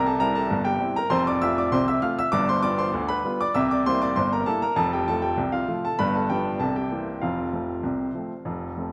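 A polished, up-front baby grand rings clear inside the generous reverb of a large scoring stage, with a 1.8-second decay trailing behind each phrase. This lively, cheerful ragtime fragment moves in a straight 2/4 at 99 BPM in F major. The solo piano spans F1 to F6 across its 8.9 seconds, cycling through C7, F and G7 before settling on F at 7.2 seconds.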